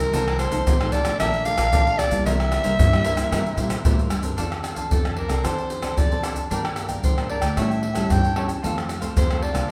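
A growling, raspy soprano saxophone with subtone and vibrato leads this sunny, lively samba and choro excerpt in F major at 113 BPM, backed by a crisp picked cavaquinho, a thumb-plucked nylon-string guitar in the background, a woody pizzicato upright bass on gut strings, and tube shaker, tight surdo, pandeiro and tamborim entering at 0.1 seconds, all set in a large studio reverb, with the saxophone taking a jazz-style solo from 4.4 seconds over chords that move from F7/C through Gm and A7 to F.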